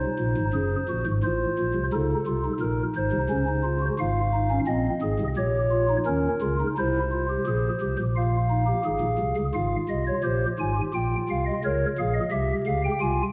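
Through the crackle and warbling pitch drift of worn old tape, dulled at the top and bathed in a wet, spacious reverb, a serious, driving baroque-style three-part fugue in 4/4 at 87 BPM unfolds on a solo pipe organ, its soft, hollow stopped-flute stops sitting up front with a mellow chiff, moving through chords like Cm7b5, Bbm and C7 before settling into F minor at 9.5 seconds and ending this excerpt cut from a longer piece on a C chord.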